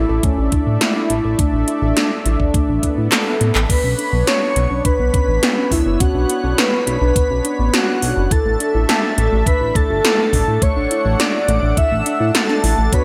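A straight 4/4 synthwave groove at 104 BPM is driven by an up-front, thumpy electronic kick and 80s electronic pad drums with a gated, overdriven snare, metallic hi-hats, handclaps and crash, under a dark, glossy chorused synth bass. Over a mellow analog pad with sidechain pumping and a soft, round pluck playing arpeggios in the background, a velvety synth lead with vibrato and delay carries the melody through a cinematic, nostalgic mood, moving from Asus4 to Bmadd9 and back. After a background swell and a drum fill, an airy, dreamy second lead joins at 3.7 s, and a brassy synth stab arrives at 12.9 s just before this excerpt cuts off.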